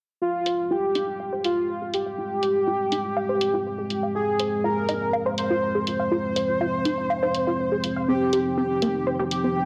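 A smooth, up-front supersaw carries the melody in this dark, dramatic melodic techno excerpt at 122 BPM in F minor, joined by a tight, driving sequenced synth playing arpeggios colored by chorus, phaser and cassette-tape grain, a deep, moody analog pad holding sustained chords, and a low-pass-filtered electronic hi-hat entering at 0.5 seconds, while filter sweeps run across the supersaw, arpeggio and pad, the harmony shifts from Fm to Cm/F at 8.1 seconds, and a lush hall reverb surrounds the whole.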